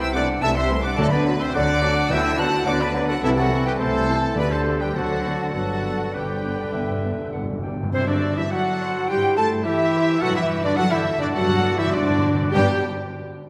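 A lively, spirited classical-period orchestral movement in G major opens at once, at a quick 97-108 BPM with a rubato feel. An expressive violin section carries the melody over airy silver flute, a roomy oboe, a mellow clarinet and a focused second violin section, while dark, distant French horns sustain chords, tight trumpets add bright stabs, a smooth viola section and a bassoon fill out the accompaniment, and cellos and an intense double bass section anchor the bass. Round, close timpani join at 1.0 s and play fills as the harmony moves from G to C/G at 7.9 s, shortly after the bassoon stops at 7.6 s, all set in a wet concert hall reverb.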